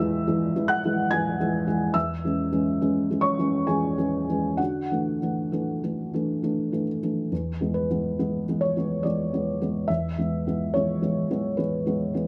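Tender and intimate, this short excerpt of neoclassical minimalist piano in 3/4 drifts with rubato and uneven beats as a solo felt-muted upright piano, thick with felt and placed up front with audible action noise, moves from E through C#m/E and Dadd9 back to E, its mellow, hushed tone framed by light reverb and a dark production.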